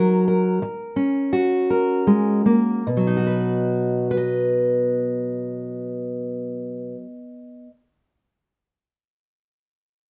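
In a straight 4/4 at a relaxed 73 to 90 BPM, this short folk passage slows down through its first 2.9 seconds. A single fingerpicked steel-string acoustic guitar carries the whole accompaniment from the start to 7.7 seconds, ranging from B2 up to D#5. Its tone is dark, with an auditorium-like body, and it sits up front in the mix. The harmony rests on F# at the opening, then resolves to B at 2.9 seconds, where a new section begins in B major, tuned slightly low at A4 = 438 Hz. A moderate studio reverb gives the guitar a gentle sense of space, and the pastoral, warm mood suggests a moment lifted from a longer piece.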